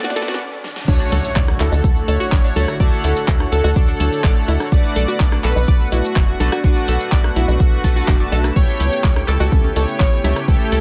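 A straight progressive house groove opens with a drum fill, a faint riser, a smooth detuned supersaw melody, glossy chorused polysynth stabs, round arpeggiated analog plucks with 12-bit grit and delay, and a very quiet lush unison pad, all playing from the start. The drop at 0.9 seconds brings in an up-front, deep electronic kick and a punchy, nasal sequencer bass pumping beneath a fat-snared deep house kit, along with a soft impact that ends by 2.8 seconds. Background congas and bongos join at 1.1 seconds, all in a dry, hopeful and expansive mix.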